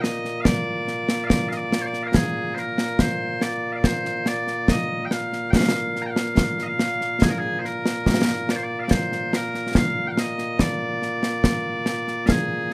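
A stirring, ceremonial piece of Scottish pipe music in 3/4 at 71 BPM is driven by concert snare and bass drum, close, dry and up front, while loud bagpipes carry a continuous, piercing, bright solo melody in Bb mixolydian through this 12.7-second excerpt, set in moderate studio reverb with the rough feel of a home demo mix.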